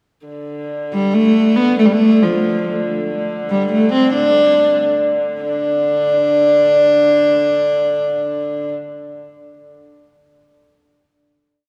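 Medieval dance in D minor at 94 BPM in a straight 6/8, ancient and driving in mood, heard as a whole short piece in a reverberant church acoustic with a long, wet tail. A dark, woody hurdy-gurdy sounds a low D drone from 0.3 seconds, and its smooth top sits quietly beneath a warm, up-front viola da gamba that enters at 0.9 seconds. The gamba's bowed, fretted voice is woody and ringing with a light vibrato and soft attack as it plays an ornamented modal melody, settling onto a final note from 5.4 to 7.9 seconds.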